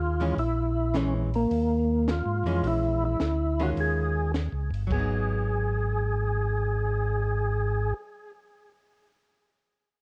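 A cassette-tape haze and a moderate small room give this short soul jazz organ trio cut a late-night, bluesy air at 106 BPM in G# minor, swinging in 4/4. Up front, a percussive tonewheel organ carries the melody with a full, lightly overdriven tone, its second-harmonic percussion, chorus vibrato, slow rotary speaker and analog delay all colouring the line. A second tonewheel organ plays the bass with a mellow, round, clean voice, key click and the same slow rotary turn. A miked, amplified archtop guitar joins at 0.2 seconds with dark, picked hollow-body chords over A#m7b5 and D#9sus4 before the harmony settles on G#m7. A compact cocktail drum kit with a high-tuned snare, punchy kick, hi-hat, crash and cymbal swell sits back with a smooth, rolled-off top and a touch of vintage 12-bit sampler grit, dropping out at 7.1 seconds while the guitar rings on to 8.7 seconds.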